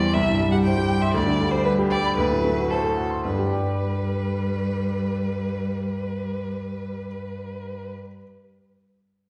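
Spirited and cheerful, this brief excerpt from a quick classical-period movement for piano trio sits in G major at 107-124 BPM in 4/4, played with a rubato feel that slows down over the first 3.2 seconds. A rich, focused violin carries the melody up front between A4 and G5, its bowed tone colored by vibrato. Beneath it, a single cello plays the second line between F#3 and G3, bowed with vibrato and expressive portamento, sounding distant and warm. The dark, mellow baby grand piano provides the accompaniment from C2 to C6 with long sustain, sitting up front and slightly louder than the strings, continuing until 8.2 seconds after the violin and cello stop at 7.9 seconds. The harmony moves through C5, G/D and D7 before settling on G as a second section begins at 3.2 seconds. A wet recital hall reverb places the trio further back in the room, with a soft, rounded top end.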